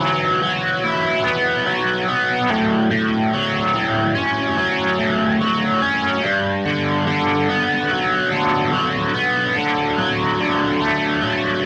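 Rock at 72 BPM in a straight 4/4, this hypnotic, trippy excerpt features a lone biting overdriven electric guitar, picked and double-tracked, sitting up front from 0.0 to 11.7 seconds across a range from G2 to E4. Its bright, overdriven tone swirls through a rotary speaker effect, moving over Esus2, A6, Gmaj7 and D. Light reverb gives the recording a digital ambience.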